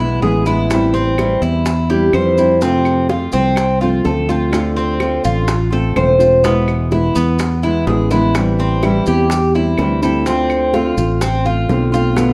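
A metallic Cuban tres, picked on double strings with some octave-doubled, sits up front playing arpeggios in this danceable, nostalgic slice of Cuban son and guajira in a straight four. Beneath it, a round fretless electric bass, also up front, holds the low end, while a bright, fingerpicked nylon-string guitar in a classical style supplies accompaniment, its finger squeaks audible. Tight, high-tuned bongos and grainy, mellow maracas arrive at 0.2 s, with woody claves following shortly after; all three percussion parts stay in the background. The harmony moves through E, Am7, F and Dm7, and a drum fill at 7.9 s leads into a second section at 8.3 s that settles on Am7 and Dm7. The dark, warm production sets the parts in a moderate large-studio reverb, and the passage is cut from a longer piece.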